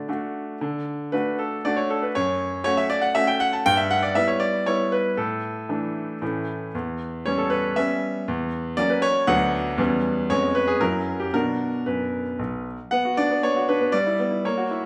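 Cheerful and elegant, this classical-period piano sonatina excerpt moves at 117 BPM in a straight 3/4, opening in D major before turning to B minor from 6.7 s. A solo grand piano, brilliant and open and placed up front, spans B1 to A5 and plays from 0.0 to 14.9 s, its harmony passing through chords such as F#m, Asus4 and F#7 before reaching Bm at 11.3 s. A moderate recital hall reverb surrounds the instrument, and a new section arrives at 12.9 s.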